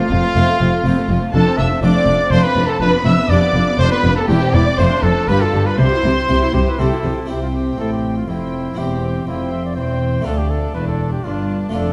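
Set in a moderate concert hall reverb with a dark, warm production, this festive, brilliant baroque-style concerto movement in C major moves at 122 BPM in a straight 3/4, cut from a longer piece. A clear, classical-style solo trumpet carries the melody, joined by a lush, distant symphonic violin section that also plays the melody up high, while a studio violin section with portamento plays a second line and a smooth, even chamber viola section and a full, plucked Italian-style harpsichord with three sets of strings fill in the accompaniment. Close chamber cellos, woody in tone, join the rich, expressive double basses on the bass from 0.1 seconds, and the harmony settles onto C before a new section begins at 7.3 seconds and closes on D minor.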